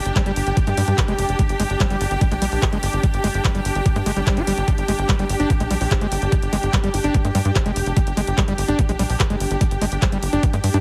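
A squelchy, gritty acid bass riff with distortion, digital delay and sidechain pumping drives this intense, psychedelic trance excerpt at 146 BPM in 4/4, over an up-front knocking electronic kick, a tight, punchy sequencer bass, bright hi-hats and handclaps from a layered electronic kit, an evolving wavetable pad holding sustained chords with ensemble chorus and pumping, distant, lush symphonic strings, and a very quiet, nasal wobble bass surfacing at 0.7 s and again at 5.8 s, with the mix carrying light reverb and a heavily compressed, radio-like sound.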